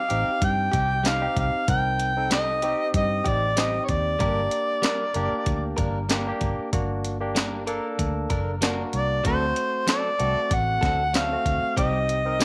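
A smooth, jazz-style harmonica with overdrive, slapback echo and scooped notes carries the melody up front in this brooding, soulful straight-eighth soul blues excerpt at 95 BPM in G harmonic minor, backed by a barky tine electric piano, bright, clean electric guitar stabs with their own slapback echo sitting in the background, a dark, round, foam-muted bass, and a gritty, compressed, sampler-style breakbeat kit with a thumpy kick, snare, hi-hat and tambourine, all in light digital ambience as the chords move from Cm through Gm to D7 and back to Cm at 11.8 seconds.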